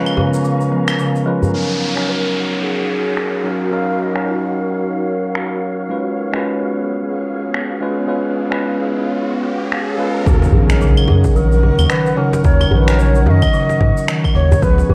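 Hypnotic and warm, this organic downtempo passage at 110 BPM in Eb minor sets a clean tine electric piano and an ethereal pad, both pumping, over a dark wind-like noise texture and overdriven electronic claves, shaker and finger snaps, while woody soft-mallet marimba arpeggios and a cracking, close djembe appear briefly at the start and return around 10.3 seconds alongside a round analog bass and a deep electronic kick; a breathy cedar flute carries the melody with tape echo, a downlifter sounds and a riser builds to an impact, and worn cassette warble colours the whole recording.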